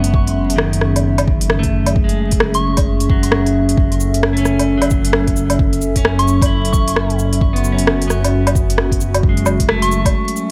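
A warbling, tape-like pad carries this wistful future garage excerpt, holding a lone F#m7 chord in F# dorian with a nostalgic, lo-fi haze, chorus and its own reverb, pumping against the sidechain. Underneath, a dark detuned saw bass rumbles and beats on F#1, while a deep electronic kick anchors the 132 BPM groove in 4/4 with a 61% swing on the sixteenths. A deep house kit sits up front with smooth hats, cabasa, rim click and woodblock in a small room. A clean, picked electric guitar adds gritty 12-bit sampler texture and digital delay as it pumps quietly in the background. A soft FM bell on C#6 drifts in briefly, first at 2.5 s, shimmering through chorus, phaser and delay, and vinyl crackle with light digital ambience frames the melancholic mood until the kick and bass drop out at 10.1 s for a short break.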